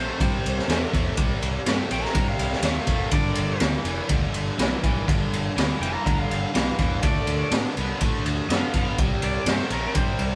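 Blues rock power trio and southern rock at 123 BPM in G mixolydian, swaggering and raunchy, cut from a longer piece: a bright, picked lead guitar with overdrive and slapback echo carries the melody over a double-tracked, overdriven rhythm guitar riff, a dark, round, foam-muted fingered bass, and a raw garage drum kit entering at 0.2 s with a punchy kick, high-tuned snare and ride cymbal, gritty and up front with a rolled-off top, all played live together in a moderate stone room as the chords move from C through G7(no3) to D and back to C5.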